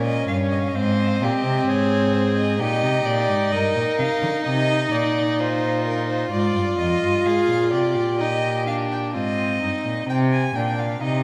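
Contemplative and solemn, this baroque-style string quartet fugue at 65 BPM, cut from a longer piece, sets a distant, warm first violin melody with vibrato over a rich, close second violin line, a focused viola accompaniment that stops at 10.1 s, and a smooth, up-front cello bass with light vibrato, all bowed and bathed in wet concert hall reverb as the harmony moves from Eb7 to a closing Cm.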